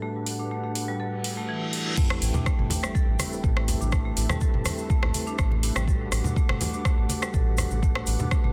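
An excerpt of earthy afro house at 123 BPM in A dorian opens with a dark, detuned analog pad holding sustained chords, bright hard-mallet marimba arpeggios under a filter sweep, and soft, flute-like tonewheel organ stabs turning through a slow rotary speaker with delay, all three pumping to the sidechain. The afro-pop kit enters at 0.3 seconds with metallic hats, rim clicks, toms and crash, while a reverse cymbal and electronic sub drop build toward the drop at 2.0 seconds. There an impact lands, and the deep electronic kick arrives alongside a grainy cabasa tucked in the background. Just after, a round, sawtooth-and-sine analog bass anchors the low end, pumping to the sidechain, followed by low-tuned, thick-skinned congas played with hard hands. The harmony moves from Em11/A to Am7, then settles on Gmaj9 at 5.9 seconds. The pad carries a vintage 12-bit sampler grit, the snare has soft clipping, and the whole is framed by light digital ambience in a dense, heavily limited modern master.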